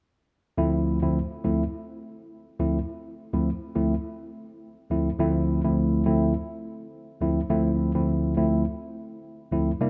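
A tine electric piano opens the excerpt at 0.6 s, settling onto a Dm7 chord in a smooth, sultry afrobeats groove with a light sixteenth-note swing. Its tone is worn and slightly out of tune yet clean, pushed through a combo amp and touched with a subtle chorus that gives it a gentle shimmer. The piano sits up front as the accompaniment, moving through its low and middle register. A moderate plate reverb with a long tail soaks the whole mix in a dreamy haze. The passage shifts into a new section at 5.2 s, and the piano carries on until 9.9 s, where this fragment of a longer piece is cut off.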